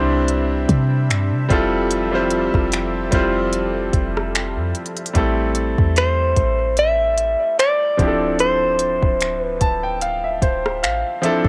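Contemporary R&B with a longing, late-night mood and a gentle swing, this excerpt is cut from a longer piece and captured as a home recording on cassette with light reverb. A clear, natural concert grand piano sits up front throughout, its deep bass supporting chords that move from Cmaj9 to Fmaj9 and later to Am7 and Dm9. A smooth, detuned sawtooth analog pad with chorus and a moving notch hovers in the background until it drops out at 5.1 seconds. Beneath it all, a clean, boomy 808-style sine bass gives dark, decaying low notes, while a produced electronic drum kit with overdrive sets soft kick, crisp hi-hat, finger snaps and rim clicks. At 6.0 seconds a picked, compressed electric guitar, recorded direct, takes the melody up front, and the piano adds a fill from 9.2 seconds, with cassette tape coloring the piano, pad, drums and guitar.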